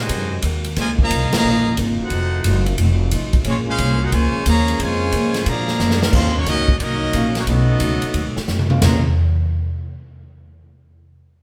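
Heard live in a stone room with moderate reverb, this excerpt of sultry big band swing in Bb minor moves briskly at 179 BPM. The brilliant trumpet section carries the melody over a dark, loose trombone second line, while very quiet, mellow saxophone chords hold until 6.1 seconds. A band accent lands at 1.3 seconds, and a growly upright bass and an airy, up-front drum kit with a punchy kick drive the swing, with a boxy, picked old acoustic guitar in the background and a short-sustain baby grand piano entering behind the band at 6.1 seconds after a drum fill.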